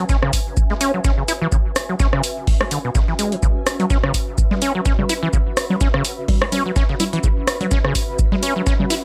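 Acid house at 126 BPM in C# minor with a swung 16th-note feel, this gritty, trippy excerpt rides a single C#m7 chord in a light reverb: an up-front, squelchy, resonant overdriven acid bass riff with analog chorus and delay sits beside a deep, tape-warm electronic kick drum and a punchy analog drum machine of congas, hi-hat and rim click, while a dusty soul sampler-style drum kit adds overdriven, compressed hi-hat, shaker and snare, high-pass filtered with sidechain pumping on its percussion and hats, all joined by a cloudy, detuned, slow-attack granular cloud pad that evolves through its built-in reverb with sidechain pumping.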